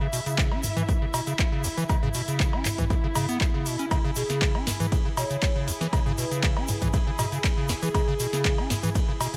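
A booming analog drum machine with crisp snare, metallic hats, cowbell, handclaps, ride and toms sets up a straight 4/4 acid house groove at 119 BPM alongside a grainy egg shaker sitting in the background, and a punchy electronic kick joins a moment later. A squelchy, tube-saturated square-wave acid bass riff churns in C# minor beneath veiled, con sordino chamber strings holding a sustained C#m chord with sidechain pumping, giving this short cut from a longer piece a raw, trippy mood. At 4.2 seconds a dark, ringing vibraphone melody with delay drifts in from the back until 8.5 seconds, all set in a light reverb.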